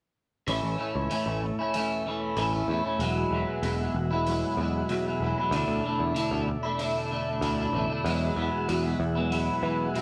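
Light reverb and a studio ambience give this psychedelic rock excerpt a hazy, hypnotic air at a steady 95 BPM in 4/4 with a straight feel, set in E mixolydian and tuned to A4 = 439 Hz. From 0.5 s, a clean electric guitar plays a compressed, up-front riff, double-tracked and colored by a phaser, while a growly, direct-sounding picked bass also sits up front. Behind them a vintage combo organ holds mellow sustained chords with heavy vibrato, and a muffled, gritty hi-hat with a rolled-off top ticks along in lo-fi small-room tones. At 1.6 s an eerie, metallic drone fades in slowly, an evolving inharmonic FM texture washed in chorus and its own reverb that lingers in the background. The harmony moves from A to Eadd9, then Dsus2, and back to Eadd9, a brief passage cut from a longer piece.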